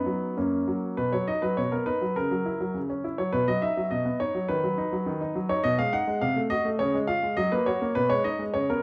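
A brilliant grand piano opens alone on an F# chord, setting an elegant, graceful classical-period sonatina in 2/4 with a supple rubato feel. Sitting up front and spanning F#2 to F#5, the solo piano moves through B, F#7/C# and G#m7/B, touching a Cdim7 before settling on G#m/B as this short cut from a longer piece ends at 8.8 seconds. A moderate recital-hall reverb surrounds the natural piano tone within a dark overall production.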